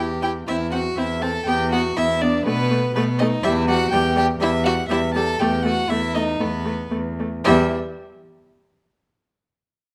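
Restless and urgent, this quick classical-period movement for string quartet, cut from a longer piece, moves with a rubato feel as a warm, gut-string first violin carries the melody over a second violin's rich, close inner line and a viola accompaniment heard at a distance with light vibrato and a nasal edge. The cello holds the bass up front with a reedy, period-style tone, and all four bowed parts stop together at 7.7 seconds. Close, detailed microphones and light reverb frame the harmony as it moves from Am6/E through B7 to settle on Em.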